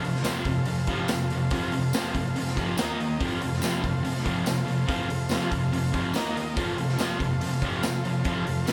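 Garage rock with a raw, swaggering strut at 142 BPM in F mixolydian, this short cut rides a bright, double-tracked fuzz guitar riff and a punchy, gritty drum kit up front in a pumping stone room, while a buzzy vintage combo organ with heavy vibrato holds sustained chords in the background and a jingly tambourine enters at 0.2 seconds, the band captured live in one room with light reverb as the harmony moves between F and Eb5.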